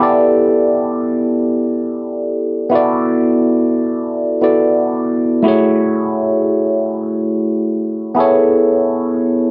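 A gritty, barky tine electric piano sits up front in light digital ambience, its overdriven tone pushed through a combo amp and colored by a phaser. This brief soul excerpt moves at 88 BPM in 4/4 with a 16th-note swing, set in F# minor, and the mood is cinematic and bittersweet. The electric piano plays alone for the full 9.5 seconds, staying between A3 and D5. Its chords move from G69 to E7sus4 at 2.7 seconds, then F#m7 at 5.4 seconds, settling on Amaj7 at 8.2 seconds. The slight reverb gives the close, biting keys a faint sense of space around them.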